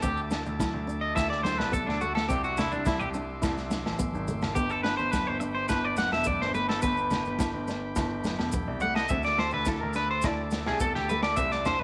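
An electric guitar at the edge of break-up sits up front, playing twangy, picked arpeggios with a slapback echo, while a clean electric guitar solo runs through the full 11.8 seconds. This joyful highlife guitar band groove moves at 106 BPM in a straight 4/4 in G major, running through Dsus2, Cadd9 and G before returning to Dsus2. A grand piano covers the bass line with a smooth, vintage tone, while a saturated, gritty breakbeat kit with a tight kick and medium-tuned snare drives the beat and adds a fill from 4.0 to 4.6 seconds. Behind them, a dark, woody nylon-string guitar fingerpicks its accompaniment and a buzzy combo organ holds sustained chords with light vibrato. Bright congas, grainy maracas and ringing agogo bells, the bells entering at 0.3 seconds, fill out the percussion within a light reverb and small room ambience, giving this warm excerpt from a longer piece its lively lilt.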